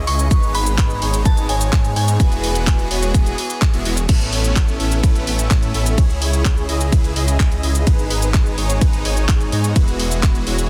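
A dense, heavily limited modern master with little reverb gives this cut from a longer festival progressive house track a powerful, emotional punch at 127 BPM in a straight 4/4. The whole 10.7-second stretch sits in drop mode. A punchy, tape-warm electronic kick sits up front from 0.3 seconds, and a layered house kit of handclaps, hi-hat, shaker, ride and crash, re-recorded in a large room, drives alongside it, with soft clipping on the snare. Huge, lush detuned supersaw chords carry the riff through a moving notch, pumping against the kick with subtle chorus and digital delay, while a thick, menacing detuned saw bass beats and saturates beneath them. A crystalline FM bell with chorus and delay sings a short melody until 3.6 seconds, where a band accent lands. In the background, a rich chamber string section with light vibrato and an earthy, smooth top holds sustained chords over a G#m, Eadd9, Aadd9, C#m progression.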